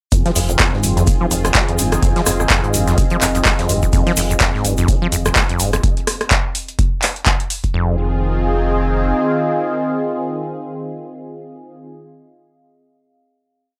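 Swung sixteenths over a 126 BPM four-on-the-floor deep electronic kick and a booming analog drum machine's metallic hats, claps and rim clicks, with a very quiet dry reggae breakbeat and a grainy egg shaker underneath, drive this gritty acid house piece in F minor, where a squelchy, resonant sawtooth acid riff with slides, shaped by a filter sweep, rides over a round off-beat analog bass, a smooth detuned analog pad and a warbling lo-fi tape-like pad that enters at 1.8 seconds, these four pumping to the sidechain until the groove gives way at 7.7 seconds to a final Fm7 held by the two pads as the round bass lingers briefly beneath them.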